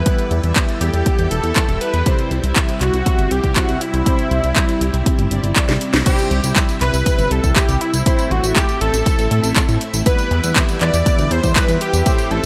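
A thick, detuned sawtooth lead with vibrato carries the melody from the opening moment of this nostalgic, danceable italo disco excerpt. It sits over swirling phased string-machine chords in the background, fat, brassy synth stabs and a glossy, up-front pulse-wave bass, while electronic drums arrive almost at once: a punchy overdriven kick and a house kit of cracking snare, bright hats, handclaps, tambourine and crash cymbal. A drum fill from 5.7 to 6.1 seconds and a band accent at 5.9 seconds mark the move into the second section, all set in light reverb.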